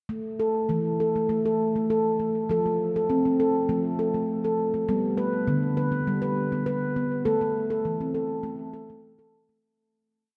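A ringing stainless-steel handpan, played solo with soft fingertips, carries this short, gentle, meditative world piece at 101 BPM in A minor (tuned to A4 = 441 Hz): its mellow, up-front ostinato with a dotted bass figure spans D3 to B4 and moves through A5, F and G back to A5, while tape echo and a vast, wet cathedral reverb let every note hang in the air until the fade-out from 7.3 to 9.6 seconds.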